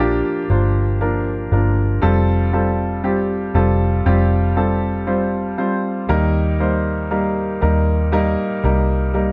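A dark, warm production set in a moderate recital hall reverb gives this short cut from a longer pop ballad a heartfelt, emotional feel. A clear, open concert grand piano carries the accompaniment up front with deep bass, moving from Bb to Fadd9 and then to Eb at 6.1 seconds. Beneath it, a vintage foam-muted fingered electric bass adds a round, punchy, amped tone throughout the 9.3 seconds.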